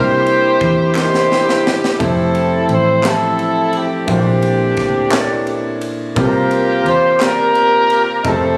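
Slow, hopeful gospel in 6/8 at 58 BPM, where an up-front, tight horn section carries the melody with light vibrato in a jazz style over open, deep-toned concert grand piano, a dark, round, foam-muted fingered electric bass, a dry funk kit with bright cymbals and a high-tuned snare that enters at 0.3 seconds and plays a fill from 1.0 seconds, and very quiet, crisp group handclaps, all moving through C9, Fmaj9, Bbmaj9#11 and C7sus4 in a moderate concert-hall reverb with a compressed, phone-in-the-room character.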